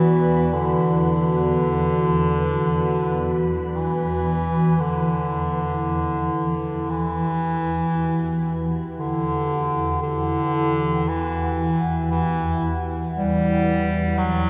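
Soaked in lush hall reverb, this dreamy, ominous dark ambient drone sets a bright, close-miked solo bass clarinet up front, trailed by shimmer reverb and diffuse delay, over a deep, moody detuned analog pad with chorus and a tense, warbling, granular synth drone that takes on a filter sweep from 4.8 seconds as the harmony moves from Bm/E to Em.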